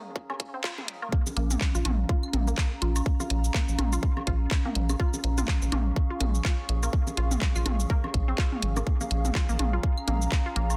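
A rubbery, hollow square bass, dark and up front with sidechain pumping, drops in at 1.4 s beneath a tight, up-front electronic kick in this hypnotic, cool minimal techno cut at 124 BPM in Bb minor with a 58% sixteenth-note swing. A brief filter-swept build-up gives way to the drop at 1.1 s, carried by elements already in motion: a squelchy, juicy resonant blip-pluck riff with chorus and dub echo, overdriven electronic bongos, woodblock, toms and claves, a garage kit of handclaps, shaker and warm, high-pass-filtered hats in a small room, and a warbling, nostalgic lo-fi pad pumping under digital ambience and a dense, heavily limited master.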